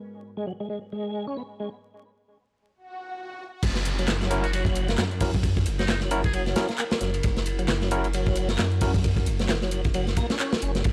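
A gritty, energetic breakbeat groove at 133 BPM swings its sixteenths, as a crunchy, saturated breakbeat kit with a tight kick and dark cymbals drops in at 3.6 seconds alongside a layered house kit of handclaps and filtered hats and a thick, menacing detuned saw bass. Before the drop, a moody analog pad with lush chorus and sidechain pumping holds G#m9 beneath a lightly overdriven tonewheel organ riff with slow rotary and tape echo, while a background swell and downlifter build through the break before the harmony moves to F#7. Barky, combo-amp electric piano stabs and a buzzy metal-muted trumpet line with an AM-radio tone and tape echo colour the drop, all set in a dry small room with transformer saturation and vinyl crackle in this excerpt from a longer piece.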